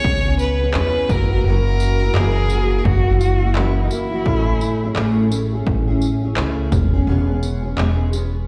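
Acoustic pop with a carefree, easy-going swing, built on a full-bodied fingerpicked steel-string guitar, a woody, thumpy upright bass up front and tape-warm 80s electronic pad drums with a punchy kick, handclaps and tambourine, while a distant, clear violin with digital delay carries the melody until 2.8 s and a rich, nasal cello with slapback echo adds a second line from 2.1 to 5.3 s, captured as a live gig through the venue's PA with recital hall reverb in this short cut from a longer piece.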